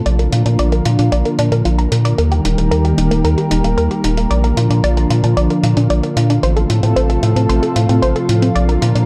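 A straight, steady 4/4 pulse carries this sunny, romantic slice of italo disco, cut from a longer piece and running just over 9 seconds. A round, deep analog bass sits up front from 0.1 seconds, its dark, sustained tone anchoring a progression that moves from Bb to Eb, back to Bb, then through F/A before settling on Bb again. Above it, a lush unison pad of detuned sawtooth voices holds thick, warbling chords with a slow attack and long release, treated with chorus and a filter sweep across its full length. An analog pluck spins bright, nasal arpeggios with a short decay and a noise layer, colored by chorus, phaser and tape echo. A gritty, compressed electronic hi-hat ticks quietly beneath everything, and the whole mix has a dark, warm production with light reverb.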